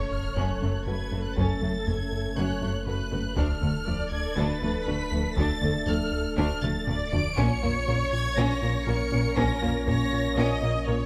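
Closely miked with light reverb, this tense, relentless hybrid orchestral and electronic film-score excerpt opens on a huge, dark sub drop before hard-stick taiko drums enter at 1.4 seconds and play a fill at 6.6 seconds, while lush, vibrato-rich violin sections carry a high melody and a second line over expressive violas with portamento, mellow French horn chords in the background, distant cellos, a woody double bass section, a rubbery, hollow square-wave bass riff, a deep, punchy sub bass and a soft, round pluck playing very quiet arpeggios.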